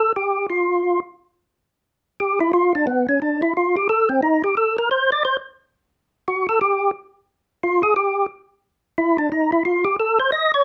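A fat, lightly overdriven percussive tonewheel organ, up front with key click, third-harmonic percussion, chorus vibrato and a slow rotary speaker, plays a soulful, greasy jazz solo in F mixolydian over a swung 4/4 at 177 BPM, tuned to A4 = 444 Hz, ranging from B3 to Eb5 across this 10.6-second cut from a longer piece, captured by close, detailed microphones in light reverb.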